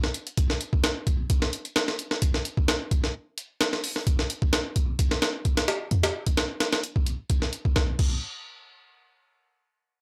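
A sampler-style breakbeat drum kit sits up front in this energetic, funky excerpt from a longer piece, carrying the track from the start until it stops at 8.1 seconds. Its compressed sound pairs a thumpy kick with a high-tuned snare, while hi-hat and crash cymbal fill out the top of the kit at natural pitch. The groove runs in 4/4 with a slight swing on the sixteenth notes, giving the breakbeat a loose, head-nodding bounce. The opening passage plays as a drop up to 7.8 seconds, after which a brief second section follows. The gritty hardware character keeps the sound dry and raw, touched only by a light reverb.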